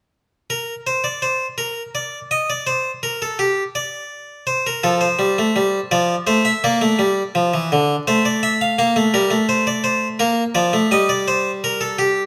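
In a straight triple metre, this joyful, elegant baroque-style two-part invention for solo harpsichord sets a bright, airy, French-style instrument with one set of strings up front in a moderate stone-room reverb, its plucked lines moving from an unaccompanied opening through F and Bb harmonies before the excerpt breaks off at 12.3 seconds.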